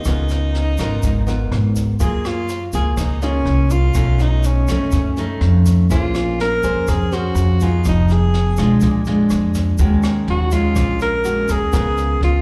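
A breathy, subtone alto saxophone with light vibrato and scooped notes carries the melody up front with a slapback echo in this melancholic, wistful 123 BPM bossa nova fragment, over a full-bodied fingerpicked nylon-string guitar with finger squeak and the same echo, a woody, thumpy pizzicato upright bass, an airy brush kit with a high-tuned snare, rim click and boomy kick, and a grainy egg shaker in the background, all heard as a live club gig through the venue's PA, with the harmony moving from Db13 to an Ebm11 passage at 9.8 seconds before returning to Db13.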